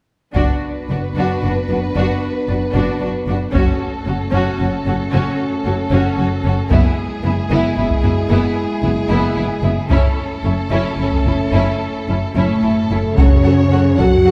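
Violins carry a lush, vibrato-rich melody over mellow French horn chords from 0.3 s in this dramatic, heroic cinematic orchestral cue in F# minor, moving at 75 BPM in a straight 6/8. A second violin line, close-sounding violas with portamento, woody cellos set in the background and dark, expressive double basses join almost at once, while a taiko ensemble struck with hard sticks brings a compressed, saturated punch through a long build-up from Bm/F# to A/F#. At 13.2 s the music settles onto F#m as a new section opens, all heard from further back on a scoring stage with moderate reverb.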